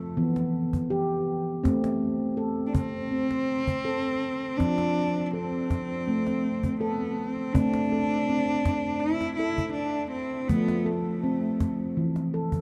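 World meditative music in A minor at 81 BPM, this gentle excerpt sets a ringing, fingertip-played stainless steel handpan's arpeggios against an intimate cello melody from a single player, bowed sul tasto with light vibrato, a soft attack and an airy tone, both sitting up front. A woody cajon with faint snares joins at 0.4 s, while the handpan and cello carry through to 12.6 s and 12.0 s respectively. The dark production is bathed in a wet cathedral reverb, and the chords move from Em through Am and F before arriving on Esus4.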